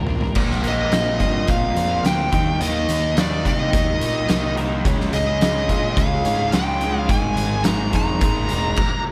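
The oversized, low-tuned drum kit stands out most, sitting up front with a boomy kick, fat snare, dark cymbals and a saturated, pumping room sound, opening with a short fill before the fuzz guitar crashes in. This cut from a longer alternative rock piece in the quiet-loud mould feels anthemic and cathartic, moving in a straight 4/4 through Bbsus2, Eb, Db and Absus2. A bright, compressed fuzz guitar carries the riff with distortion and slapback echo, while a dark, high-gain lead guitar, also up front, sings a high melody through the same distortion and echo from 0.7 seconds. Underneath, a round, overdriven fuzz bass grinds low, and a clean twelve-string electric guitar plays very quiet arpeggios in the background. A lush hall reverb gives the whole band a big arena sound.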